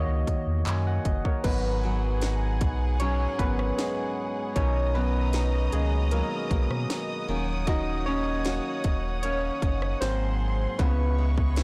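Longing and moody, this contemporary R&B passage, cut from a longer piece, moves at an unhurried 77 BPM in G# minor over a straight 4/4 feel. Soft, round electric-piano-like synth keys with a gentle chorus and a filter sweep open the passage alongside a deep, mellow sine sub bass. An up-front trap kit joins at 0.3 seconds with a hard-clipped kick, sharp snare, crisp hi-hats, handclaps, rim clicks and crash cymbal. At 1.4 seconds the synth keys take a solo as a smooth, bowed studio string section adds sustained chords with vibrato, and a bright, fingerpicked nylon-string guitar plays arpeggios through a digital delay, its finger squeak audible. The harmony moves through minor-seventh and major-seventh chords, touching G#7 before settling on C#m7. The recording is dry and blown-out, with an overdriven edge that keeps it close.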